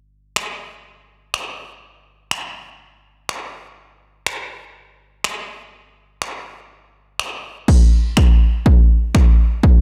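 A punchy analog drum machine carries this confident, driving pop excerpt at 123 BPM in a straight 4/4, its kick, finger snaps and crash cymbal sitting up front after they enter at 0.4 seconds, with the sound of a large room captured around them. The production is dark and dry, with a faint mains hum beneath, and the music moves into a new section at 7.7 seconds before the drums stop at 9.7 seconds.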